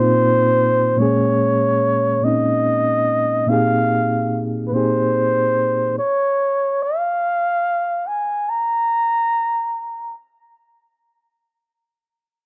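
A breathy, dark flugelhorn and a reedy electric piano with fast tremolo open this late-night, sultry R&B fragment in a slow 6/8, the horn sitting up front with soft attacks, vibrato and a touch of slapback echo. The electric piano's clean chords stop at 6.0 seconds, leaving the whispered, intimate jazz-style horn solo to carry on alone until 10.2 seconds. The sound is dry and close, like a small 1970s studio room.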